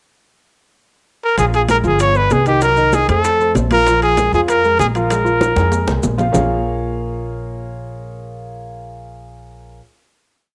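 Lightly reverberant like a small-room home cassette, this sultry, fiery Afro-Cuban jazz piece in Bb minor at 193 BPM opens with a clear, cassette-tinged trumpet stating motif-based call phrases from 1.2 s, joined at 1.4 s by a woody, thumpy upright bass tumbao that anticipates the chords, a natural grand piano montuno in octaves, and background congas with slaps and open strokes, round low-tuned bongos in steady eighths with hand bell, metal-shell timbales playing shell pattern and bell, and grainy maracas, with a drum fill at 5.4 s leading to a final Bbm7 chord held by piano and bass until 9.8 s.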